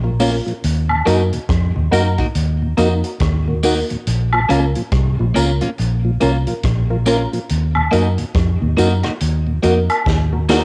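Hypnotic and serious, this short roots reggae cut swings gently on its 16ths as Bbm and Ebm chords alternate under a dark, foam-muted bass that sits up front. A mellow tonewheel organ with key click and slow rotary turns in the background, while a detuned sawtooth dub chord stab plucks through a phaser and moving notch filter, both colored by cassette tape. From 0.2 seconds a clean, compressed electric guitar, a vintage drum kit with a punchy kick and rolled-off top, and a distant tambourine and woodblock join the groove in a small, lightly reverberant room, and the kit closes with a fill at 10.1 seconds.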